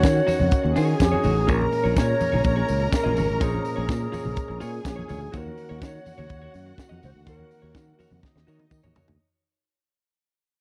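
A straight disco groove is driven by a tight funk drum kit, up front with a high-tuned snare and a tight kick, with hi-hat and toms, while a growly, fingered electric bass sits just as forward beneath it. Low-tuned, ringing congas add very quiet percussive color, a jingly tambourine sits in the background, and a dark, compressed clean electric guitar with spring reverb picks out accompaniment. The mood is glamorous and sultry, with an airy, bright alto flute carrying the melody with vibrato and a slightly unsteady tone, set against a lush, distant string section playing a second line. A warm French horn section holds sustained chords far back in the room, and a worn, slightly out-of-tune tine electric piano enters at 1.5 seconds, barely audible. The dry, close 1970s-style sound moves between minor seventh chords as the whole passage fades out, with the flute dropping away at 8.2 seconds and the drums closing on a fill.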